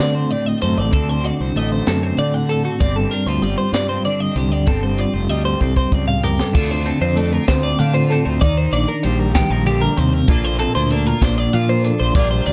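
A dark, dry production frames this short, intricate and wistful cut of math rock and midwest emo, moving at 64 BPM in a straight 6/8 and tuned slightly low to A4 = 438 Hz. Two bright, twangy twelve-string electric guitars share the space, one playing accompaniment through a harmonic tremolo and the other spinning up-front arpeggios with slapback echo, over a round, fuzz-laden fingered bass and a crisp, polished fusion kit with a high-tuned snare and punchy kick. A drum fill at 5.6 seconds leads into a second section at 6.5 seconds, where the chords turn from D7 and G9sus4 to Dm7, Ebmaj7 and Bbmaj7.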